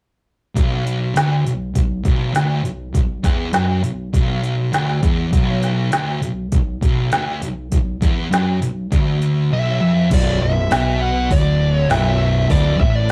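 This cut from a longer piece has the rough, unpolished sound of a rehearsal-room recording, with light reverb around the band. It is sludgy, hypnotic stoner and doom metal in B minor at 101 BPM, in a straight 4/4 and resting on a B minor chord. From 0.6 seconds two thick fuzz guitars play a low riff: one is dark and set in the background, the other warm and up front. An organic electronic drum kit sits forward with a deep kick, a woody snare, smooth hi-hats and a crash cymbal, its tape-tinged sound re-recorded in a large room. At 9.5 seconds a compressed, shadowy fuzz lead guitar adds a high melody. At 10.1 seconds a fingered electric bass joins as the music moves into a new section, overdriven, growly and punchy, heard both direct and through an amp.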